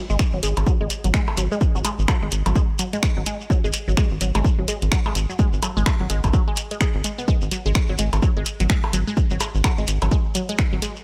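A squelchy, resonant blip pluck riff with phaser, 12-bit sampler grit, sidechain pumping and dub echo opens this sparse, quirky minimal techno excerpt at 127 BPM with swung 16ths, joined at once by a rubbery, nasal square bass pumping on G#1 and a grainy, close shekere, while a dry, punchy electronic kick sits up front beside a garage kit of finger snaps and warm hi-hats, and overdriven percussion blips enter at 0.6 s, over a single G#7(no3) chord with little reverb.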